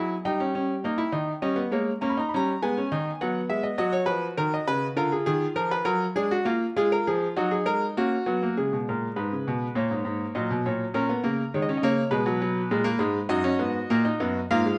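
Close, detailed microphones and light reverb put a bright baby grand piano up front, its brilliant tone ringing with long sustain. This solemn, serious baroque-style fugue in four voices moves in a straight 4/4, with the solo piano spanning Gb2 to B5 and tuned to A4 = 435 Hz. Cut from a longer piece, it shifts into a second section at 8.6 seconds, where the harmony moves through C#5 and F# before settling on an Ebm/Gb chord.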